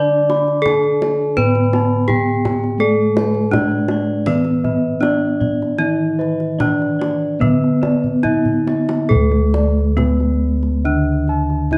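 Shimmering and ceremonial, this Javanese gamelan passage in straight 4/4, cut from a longer piece, sets a bright, up-front bronze metallophone melody struck with a horn mallet over a lower metallophone accompaniment whose mellow, paired tuning produces shimmering beats. Bossed gongs weave soft, padded arpeggios while a deeper set carries a round, airy bass, and a second horn-mallet metallophone adds close, dry arpeggios up high until it stops at 9.1 s. A kendang played with soft hands enters at 0.3 s and plays a drum fill from 8.0 s into a new section, all within a moderate recital-hall reverb and a dark production.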